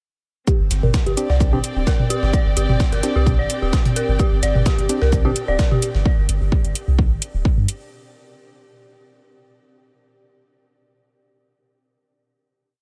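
This is a short, complete minimal techno piece at 129 BPM in 4/4, with a light swing on the sixteenths and a sparse, cool mood built on a Gsus4 chord. A punchy, tape-warm electronic kick sits up front with a four-on-the-floor pulse, joined by metallic programmed hi-hats and a gritty, compressed sampler-style breakbeat loop with edits, carrying hi-hat, shaker and a medium-tuned snare, all high-pass filtered and set further back. A deep sine sub bass with a pitch-drop attack rolls out a staccato groove under the drums, while overdriven analog toms scatter clicks and blips in cross rhythm through delay. Above, an eerie, inharmonic FM bell repeats a 9-step loop that drifts against the bar, its chorus and delay colored by a filter sweep, and a rich bowed string section slowly shifts chords beneath it with smooth vibrato. Hollow organ-like stabs echo in the background, moving one chord shape in parallel, and from 4.6 seconds a very quiet, bubbling sawtooth texture holds a single high note under random filter steps, while the bell, strings, bass and breakbeat pump against the kick in a light reverb.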